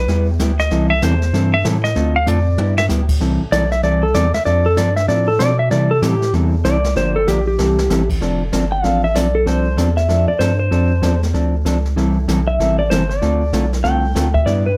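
Cheerful and down-home, this western swing excerpt in C major bounces along at 192 BPM with a swing feel, as a dark, compressed lap steel guitar carries a short opening slide melody until 2.9 seconds before a bright, twangy pedal steel guitar enters at 3.5 seconds to take a fingerpicked solo over a round, deep analog bass, a hollow-body jazz guitar comping sixth and seventh chords, and a brushed drum kit with a boomy kick and dark cymbals that adds a fill at 7.3 seconds, all set in a moderate studio reverb.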